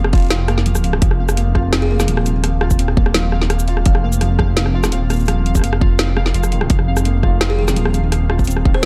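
Half-time drum and bass with a spacious, dark mood, cut from a longer piece: a tight, up-front electronic kick and a kit of woody snare, bright hi-hats, rim click and shaker sit under a deep, rumbling detuned saw bass that beats and sustains. A soft, felt-muted upright piano plays mellow arpeggios with audible action noise, vintage 12-bit sampler grit and tape echo, while a pulsing gated texture with chorus and its own reverb hangs in the background. A buzzing kalimba adds short, plucked, woody phrases with delay, briefly around 1.8 seconds and again from 7.5 seconds, all within a dark, warm, fairly dry production.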